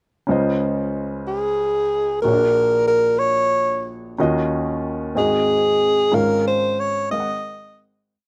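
A close-miked alto saxophone with a breathy subtone and light vibrato carries a jazz-style solo melody built from short motifs in balanced phrases, its punchy tone given a slapback echo as it enters at 1.3 seconds over a soulful, jubilant gospel verse in Db major. Beneath it, an intimate grand piano with audible action noise holds drop-2 chords touched with grace notes, moving through a slow 6/8 at 61 BPM from Dbmaj9 to Bb7alt, Ebm9 and Ab7. The dry, roomless outdoor sound keeps both parts up front until the short piece fades out from 6.1 seconds to its close at 8.1 seconds.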